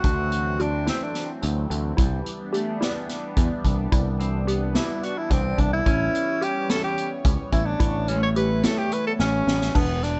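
Driving along in 7/8 at 216 BPM counted in eighths, this intricate progressive instrumental has a straight feel, cut from a longer piece and moving from D7 to Cmaj7 to A7. An up-front unplugged drum kit played with bundle sticks sets the pulse, with a tight kick, high-tuned snare, hi-hat and dark crash cymbals sounding distant and roomy, and it drops in a fill at 9.2 seconds. Beneath it, an overdriven picked electric bass sits close and round, while a woody, percussive wave-folded pluck spins chorused, tape-echoed arpeggios in the background. A swirling, warbling analog pad with phaser and chorus holds the harmony, and a clean, fingered electric guitar joins at 2.0 seconds with a dark second line bathed in spring reverb. Out front, a breathy tenor saxophone solos in a jazz style with scooped notes and light vibrato, pausing briefly before returning at 4.8 seconds, its smooth top carried on plate reverb within a lightly reverberant mix that keeps the highs rolled off.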